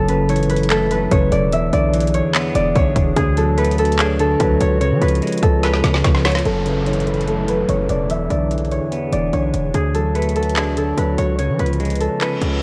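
Hip hop with a trap edge, this brooding, menacing excerpt moves at 146 BPM in a half-time feel, cycling through F#m7, E7, Dmaj7 and C#7 in F# minor. An up-front concert harp carries the fingerpicked melody, its mellow, ringing tone softened by a low-pass filter. A dark, clean semi-hollow electric guitar plays fingered accompaniment beneath it, also filtered, while a glassy, ethereal FM pad holds very quiet sustained chords with an ensemble chorus shimmer. A hard-hitting 808-style bass delivers punchy, heavy sine notes with a noise layer and a fast attack, and the electronic trap kit brings a hard-clipped kick, woody snare, metallic hats and handclaps. A drum fill at 5.6 seconds leads into the second half, where a filter sweep runs from 6.5 seconds to the close, a downlifter enters, and a reverse cymbal lands at 12.3 seconds. Light reverb and a worn, warbling cassette-tape character with pitch drift give the whole mix an aged, unsteady sheen.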